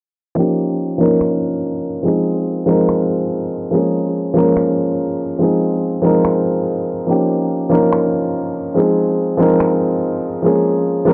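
A half-time 4/4 pulse at 143 BPM carries this dreamy, lush future bass excerpt in F minor, with an intimate grand piano accompanying from 0.4 seconds, set up front with audible action noise, short sustain and a digital delay, moving through Eb9, Fm7 and Bbm7 chords. Electronic finger snaps with a tape-warm, produced character sit low in the mix from 1.2 to 9.7 seconds, their snare passed through a low-pass filter, while a filter sweep runs across the drums and the whole passage until 11.1 seconds. Light reverb and small room ambience frame the sound under an overall low-pass filter.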